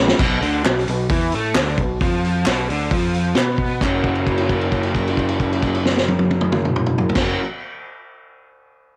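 Rowdy and raw, this short garage rock cut from a longer piece drives along at 132 BPM in F# major, with a double-tracked, overdriven guitar riff up front and a bright, growling picked bass pushed through its own overdrive. A vintage drum kit with a punchy kick, high-tuned snare, dark cymbals and a rolled-off top opens on a fill, while distant group handclaps sit in the background from 0.7 to 4.0 seconds. The home cassette recording carries light reverb and a lo-fi edge, moving from a Bdim chord to F# at 3.8 seconds, where a held note rings until 7.2 seconds.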